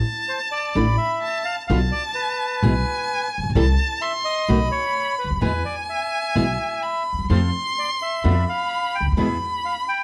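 A woody, up-front pizzicato upright bass with steel strings anchors this passionate, sultry tango excerpt at 128 BPM in 4/4, played with a rubato feel and tuned to A4 = 445 Hz. A bowed solo violin opens alone at 0.0 seconds with expressive vibrato and portamento on a high second line, joined at 0.3 seconds by a reedy, boxy bandoneon carrying the melody, while a fingerpicked flamenco guitar adds warm accompaniment over chords moving from Dsus2/A and Bm toward E, F and Bdim/F. From 7.3 seconds a bright second bandoneon adds stabs in the background, and the recording has light reverb and close, detailed miking.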